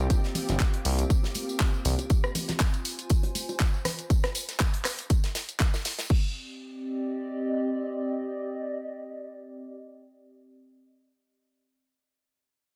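A punchy, layered electronic kick sits up front in this moody, smooth deep house excerpt at 120 BPM in C minor with swung 16ths, joined by a house kit of handclaps, hi-hat, rim click, tambourine and crash, an airy, polished studio kit in the background with high-passed snare, hats and tambourine, and bright, soft-handed congas and bongos. A nasal sawtooth-and-square synth bass with vibrato and a silky vintage string machine holding sustained chorused chords sit over C9sus4, both pumping to the sidechain, and drop out by 2.1 s as the harmony turns to Fm. A detuned, lo-fi, tape-like pad with chorus, phaser and its own reverb continues alone after the drums stop at 6.2 s, settling on Cmadd9 until 10.4 s under light reverb.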